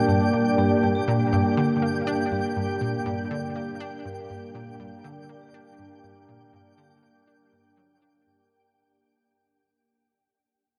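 Expansive and mysterious, this cut from a longer piece of ambient, sequencer-driven space music moves at 121 BPM in a straight 4/4 over a G minor chord, fading out across its 8.5 seconds in a huge, wet reverb. An up-front, morphing wavetable pad with a warbling, vintage phaser sustains chords while a round, detuned sawtooth analog pluck enters at 0.1 s with a riff, colored by chorus, cassette tape and analog delay. Metallic, ringing vibraphone arpeggios played with medium mallets and motor off float through analog delay, and a twinkling granular FM texture adds an octave-up shimmer high on G5.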